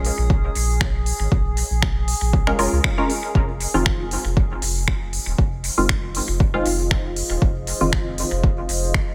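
A dense, heavily limited master with light digital ambience frames this deep, meditative dub techno in F minor at 118 BPM with a slight 16th swing, where muted, detuned sawtooth chord stabs sit up front through chorus, phaser, sidechain pumping and dub echo over a round sine sub bass that also pumps, a smooth deep house kit of finger snaps and hi-hats with dub echo and a softly clipped snare, and a punchy, tape-toned electronic kick entering at 0.3 seconds, while a glassy texture of drifting overtones floats until 3.4 seconds as the harmony moves from Bbm7 to Fm7, and a moody sawtooth pad with a sub octave and slow attack enters at 5.3 seconds.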